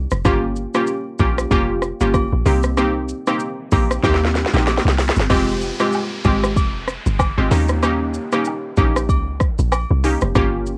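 A glassy, crystalline wavetable pluck with chorus and cassette tape color sits up front over a deep, round log drum bass in this hypnotic, smooth afrobeats passage in F minor at 95 BPM with a swung 16th feel, joined by an electronic afro-pop drum kit with a sharp snare and tape-worn character, close, dry agogo bells and woodblock in the background, a faint electronic riser and downlifter from 3.6 seconds, and a drum fill from 4.0 to 5.3 seconds leading into the second section of this lightly reverberant home cassette recording.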